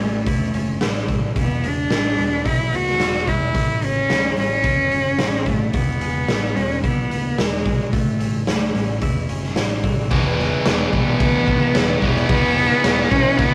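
A rough rehearsal-room recording with tube saturation and moderate reverb frames this cathartic, anthemic quiet-loud alternative rock passage, where an up-front bowed cello carries a focused melody with vibrato over twangy, compressed twelve-string electric guitar arpeggios in the background, a growly picked electric bass and a gritty garage drum kit with a punchy kick that enters at 0.3 seconds, until at 10.1 seconds the twelve-string stops and a tight, double-tracked distorted guitar riff enters.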